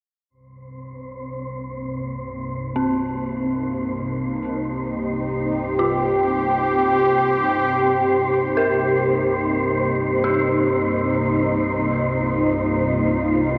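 A bright, up-front resonant pad carries this vast, ominous dark ambient drone, its detuned sawtooth chords sweeping and evolving from 1.3 seconds within an enormous reverb. Beneath it, a low organ-like drone with ensemble chorus fades in alongside a breathy, wind-like tuned noise texture. From 2.8 seconds, an eerie, inharmonic FM bell adds decaying arpeggios through chorus and a diffuse ambient delay in this fragment of a longer piece.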